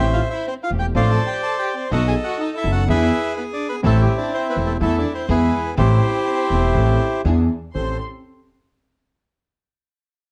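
This dramatic, melancholic tango excerpt opens with every part sounding together: a reedy bandoneon carries the melody up front, and a woody, bright pizzicato upright bass with steel strings sits close beside it. A concert grand piano supplies the accompaniment with deep bass and long sustain, while a lush studio violin section plays a distant second line in the background, bowed with vibrato, soft attacks and expressive portamento. A chamber string section adds very quiet bowed stabs that feel pure and floating. The rubato feel lets the phrasing breathe over a minor-key progression that moves through Am7, Dm7/A, B7 and E7, with an Esus4 resolving to E before landing again on Am7. A new section begins at 7.7 seconds, all within a dark, warm production touched by light reverb.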